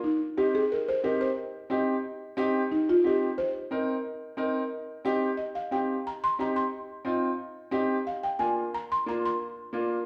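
Fiery, driving Latin music in C minor at a brisk 180 BPM in straight 4/4, this short excerpt features a buzzing marimba played with soft mallets carrying the melody, its woody, round, mellow tone sitting up front. A bright upright piano accompanies from 0.4 seconds with a polished, brilliant sound and long sustain. The band plays live together in one large studio with a lush reverb, the harmony resting on C minor before moving to Bb at 8.1 seconds, shortly after a new section begins at 5.4 seconds.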